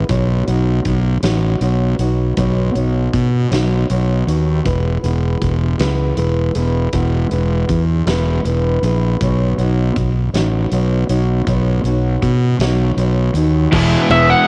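Quiet-loud alternative rock in a restless, anthemic 6/8, cut from a longer piece and captured on cassette in a small room, where a woody, boxy fingerpicked acoustic guitar with old strings plays arpeggios over a growly, up-front fuzz bass and a big-room drum kit with a fat snare and tight kick, moving between Badd9 and E until, at 13.7 seconds, the acoustic stops and three overdriven guitars (one dark and compressed, one hollow-bodied, one bright, lo-fi and double-tracked with tremolo) enter with a background riff, joined at 14.1 seconds by a distorted octave-fuzz lead melody.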